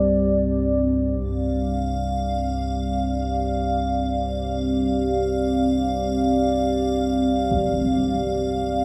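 A dark ambient drone in free time opens on a Csus2 chord, with an up-front, moody sawtooth pad carrying chorus and phaser above a deep, ominous rumbling drone thickened by lush chorus and its own reverb. From 1.2 seconds a filter sweep moves through the drone, and at 1.5 seconds an icy, crystalline glass pad adds airy brightness up high; at 7.5 seconds a huge, bright impact sounds in the background. This fragment of a longer piece is soaked in a cavernous 7.8-second reverb that creates a desolate, dreamy air.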